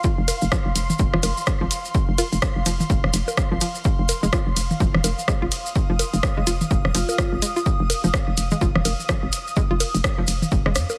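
A clean, lightly reverberant mix opens this short cut from a longer minimal techno piece, its mood quirky and clinical, riding a swung sixteenth-note groove in 4/4. An up-front, punchy analog kick, re-recorded in a large room, anchors the pulse, joined by an analog drum machine playing hi-hat, ride cymbal and rim click, electronic bongos and toms sent through digital delay, and grainy, compressed maracas. Beneath them a hollow, bouncy FM bass with a fast attack and tube saturation knocks in the low register, breathing with sidechain pumping, while a detuned square-wave pluck with a short decay carries the riff through chorus and tape echo. High above, an ethereal, bright pad with a slow attack and long release shimmers with ensemble chorus, phaser and its own reverb, also breathing with sidechain pumping. A metallic, ringing vibraphone, struck with medium mallets, sounds a single brief note from 6.9 to 7.3 seconds in the background, and a drum fill arrives at 10.8 seconds just before the cut ends.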